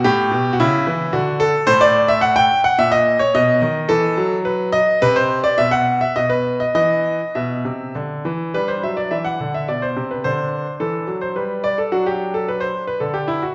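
A brilliant, up-front grand piano plays alone throughout this short passage from a baroque-style classical suite movement, its polished tone reaching from a deep bass up into a present upper register. The music feels radiant and flowing, moving in a three-beat metre with supple rubato. It is set in a resonant church or concert-hall acoustic with a generous recital-hall reverb, and a new phrase begins at 8.5 seconds.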